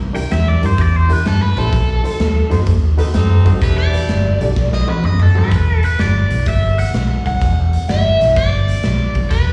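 A muted, round electric bass opens this mournful, brooding electric blues shuffle in E minor, swinging at 127 BPM, with an overdriven, reedy electric piano and a crunchy, picked guitar arriving almost at once. The raw garage drum kit sits up front with a punchy kick, medium-tuned snare, hi-hat and toms, its gritty, saturated sound filling a bright stone room. Through the first 5.5 seconds the overdriven guitar takes a solo, bright and treated with phaser and slapback echo, while the electric piano shimmers with fast tremolo through a combo amp before dropping out at 5.4 seconds. A clear, soft-attacked jazz saxophone section adds stabs from 1.6 seconds over chords moving from C7 through B7b9 to Em7, and a drum fill at 4.6 seconds leads into the next section. The whole cut, taken from a longer piece, sounds like a live gig heard through the venue's PA, with light recital-hall reverb and small-room ambience.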